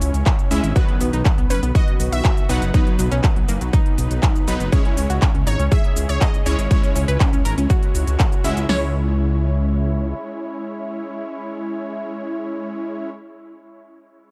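A straight 4/4 pulse at 121 BPM drives this dreamy, emotional progressive house excerpt in C# minor, opening on a drop that runs to 8.7 seconds as the harmony moves from C#m to B and back. Two layered, overdriven big-room drum kits carry the groove: one brings kick, snare and crisp hats, while the other adds handclaps, hi-hat and shaker, sitting up front with a punchy edge. Beneath them, a deep, rumbling detuned saw bass pumps with the sidechain until 10.1 seconds. A tight, driving sequenced synth spins mellow arpeggios through chorus, phaser, sidechain pumping and dub echo, while an airy supersaw stab punctuates the chords with its own pumping and echo. On top, a lush unison pluck carries the melody between B4 and G#5, its bright, ring-modulated tone trailing dub echo. The drums drop away as a second section begins at 8.7 seconds, leaving the bass and synths to ring on in a dark production with digital ambience.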